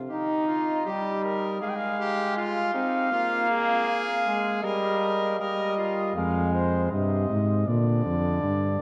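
Solemn and serious, this classical brass piece is an imitative canzona in Eb major, moving at a steady 79 BPM in 4/4 with a straight feel, and it is cut from a longer work. A clear, roomy trombone sets up the accompaniment from the very start, sitting up front, while a mellow cornet carries the melody high above it. A clear trumpet adds a distant second line until 6.1 seconds, and at 6.2 seconds a mellow tuba enters with a soft attack to take up the bass, placed up front. The harmony moves from Eb through Fm/Ab, Bb5 and Eb/G before settling on Fm and Bb in the closing passage. A wet cathedral reverb with a 5.7-second decay places the ensemble in a vast, echoing space that lends the whole performance a hallowed grandeur.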